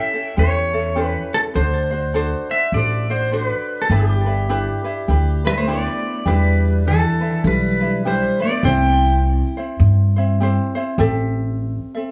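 Light reverb and a small room ambience give this languid, dreamy Hawaiian piece an intimate, close sound. It moves at 102 BPM in 4/4 with a gentle swing on the eighth notes, beginning in G major and turning to E minor at 6.3 s. Up front, a clean, compressed electric pedal steel guitar carries the melody, played with fingerpicks and slide, its volume swells trailed by digital delay. A mellow, light fingerpicked ukulele provides the accompaniment, while a woody, thumpy pizzicato upright bass on steel strings sits prominently underneath. From 5.5 s a warm fingerpicked dreadnought acoustic guitar adds a second line, also touched by delay, until it and the steel both stop at 9.2 s, leaving the ukulele and bass to close.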